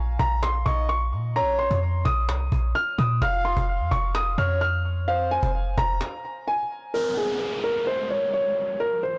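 Hard-hitting and eerie, this short excerpt of half-time trap hip hop at 129 BPM sets a dark, mellow concert grand piano melody with audible action noise and delay over a boomy, sine-like 808-style bass, while a woody cajon struck with hard hands sits lower in a small room. A soft, breathy flute-like synth lead with chorus, vibrato and delay adds a second line from 0.7 to 5.5 seconds over Bbmadd9 and Fm, before the bass drops out at 6.0 seconds for a brief break. An electronic downlifter then joins the piano and cajon for the close, all within a blown-out, overdriven recording.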